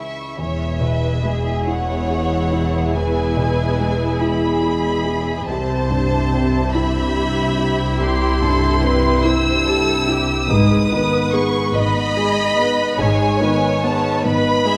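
In a rubato 6/8, this sorrowful, longing cinematic excerpt sets a lush, smooth violin section singing the high melody over a focused, distant second violin line and a clear, present grand piano with long sustain, while an even viola section, a cello section in the background and a woody double bass section enter at 0.4 s as the harmony moves from E to C to G#m in a moderate scoring-stage reverb.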